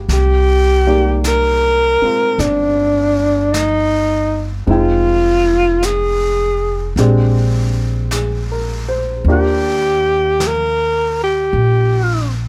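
A warm upright piano with audible action noise and a thumpy, woody pizzicato upright bass open this tender, intimate, slow swinging jazz fragment at 52 BPM in Eb major, joined at 0.1 seconds by an up-front, breathy alto saxophone singing a subtone melody with vibrato and scooped notes over Cm9, Fm7, Bb13 and Ebmaj7, while a distant, roomy brush kit on snare and hi-hat sits far back under light reverb.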